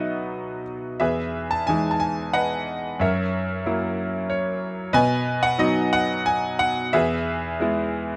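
Classical solo piano in a hopeful, sunny mood, this brief cut from a longer piece unfolds at 90 BPM in 3/4 with free rubato in E major, as a bright concert grand with a brilliant, slightly worn tone and deep bass carries the lyrical line from E2 to A5 through chords moving from B to Emaj7, F#7 and back home to E, adding a short fill from 4.0 to 5.0 seconds, all captured up front by close, detailed microphones in light reverb.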